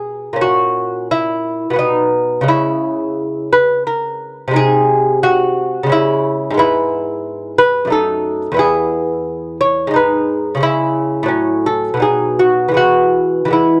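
Radiant and dance-like, this classical excerpt is a baroque-style dance in 3/4 at 88 BPM with a rubato feel, played by a solo lute tuned to A4 = 436 Hz, its delicate fingerpicked gut double strings, some octave-doubled, ranging from E2 to C#5 and sitting up front in a dry, close 1970s-style studio sound with small room ambience as the harmony moves through C#m and G#/B# before settling into E major from 6.6 s and closing on E.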